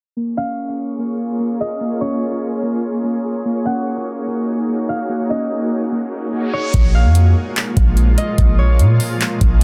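Muted, felt-like synth keys open this hazy, spacious cloud-rap excerpt at 0.2 s, playing dark arpeggios through chorus and tape echo as a filter sweep unfolds. They are soon joined by a fingerpicked, ringing concert harp melody with its own tape echo, a very quiet texture of glassy, drifting overtones, and a shimmering, ethereal pad of detuned sustained chords with octave-up shimmer, reverb and sidechain pumping. An electronic riser leads to 6.7 s, where the keys and glass texture stop and a booming analog drum machine enters up front in a half-time feel with a deep kick, metallic hi-hats and handclaps, alongside a boomy 808-style bass, all within a dense, heavily limited master that carries a digital ambience and a low-pass filter.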